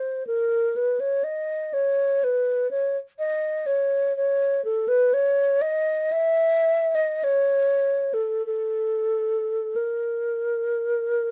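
Rubato and free in a slow 4/4 that drifts between 46 and 64 BPM, this brief, lonely and meditative classical passage, cut from a longer piece, is given over entirely to an unaccompanied alto flute. Up front and hollow in tone, the flute sings airy, tongued lines with vibrato between A4 and E5, playing alone from 0.0 to 11.3 seconds. Light reverb and a dark, warm production lend the mellow solo a quiet, inward glow.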